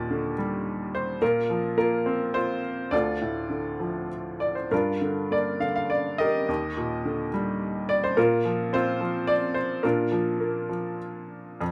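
In a rubato triple meter, this brief lyrical classical fragment for a bright, woody upright piano sounds sunny and intimate, its close, up-front sound catching the audible action noise as the solo part ranges from D2 to F5 over chords moving from Ebmaj7 through Gm7 to settle on Bb by 9.8 seconds.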